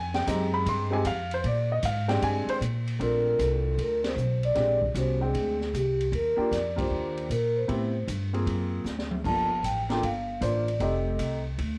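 A mellow vibraphone played with soft mallets, motor off, carries the melody from 3.0 seconds, its ringing tone given a faintly worn cassette-tape colour. This is relaxed, swinging small-group jazz in the swing and bop vein, moving at 154 BPM in 4/4 with swung eighths in Bb major. Underneath, an intimate, up-front concert grand piano comps with audible action noise and deep bass, while a woody, thumpy pizzicato upright bass on gut strings sits close and anchors the harmony. The drum kit sounds distant and roomy, with dark cymbals, a high-tuned snare and a boomy kick, and it adds a brief fill around 8.8 seconds after band accents at 4.0 and 6.7 seconds. The harmony moves through rich extended chords such as Bbmaj9, Ebmaj9 and D7alt, and the whole piece, cut from a longer performance, has the light reverb and small-room feel of a home cassette recording.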